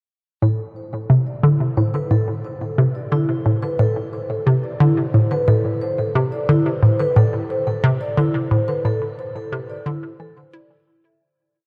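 In a straight 4/4 pulse at 89 BPM, this short, mysterious and cosmic piece of ambient, sequencer-driven space music in A minor sets an up-front, hollow and bouncy detuned square-wave pluck riff, a 5-step loop with chorus, phaser and analog delay drifting against the bar over A2 to E4, beneath metallic, ringing vibraphone arpeggios from medium mallets with slow motor vibrato, close-miked and full, cycling a 10-step loop between E4 and E5 with analog delay as they fade in from 0.4 s, all on a single Am chord inside a huge ambient reverb before the piece fades out from 7.6 s to 11.2 s.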